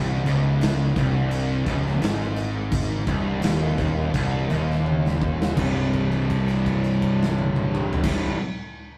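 A big, up-front rock drum kit with a punchy kick, medium-tuned snare, bright crash cymbal and toms drives this heavy, hypnotic stoner and doom metal excerpt at 84 BPM, slowing down over the first 5.6 seconds before a drum fill leads into a held C5 note lasting until 8.0 seconds. Behind it, three picked, distorted guitars play a low riff over C minor: a double-tracked, compressed electric guitar, a compressed fuzz guitar and a thick, dark fuzz guitar, while a growly, overdriven fingered fuzz bass fills the bottom. The rough rehearsal-room sound carries tube saturation and a moderate stone room reverb.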